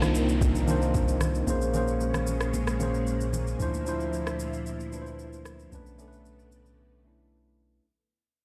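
A straight 4/4 amapiano groove drives this deep, hypnotic fragment from a longer piece. An electronic drum kit supplies a soft kick, rim click and shaker, while bright, thin-skinned congas, damped and low-tuned, sit close yet in the background until 3.5 seconds. A punchy sine sub bass with a pitch-drop attack anchors the low end, and a clean tine electric piano, heard through its built-in speakers, sits up front with its accompaniment. Behind it, a lush vintage string machine built on sawtooth with a sub octave holds slow-attack chords through an ensemble chorus, a moving notch and sidechain pumping, while an electronic downlifter hovers in the background early on. The harmony drifts through Cm9, Bbm9, Dm9 and Bm9 as the passage fades out, the drums drop away at 6.8 seconds for a short break, and light stone room reverb gives the sound of a big system playing in a bare room.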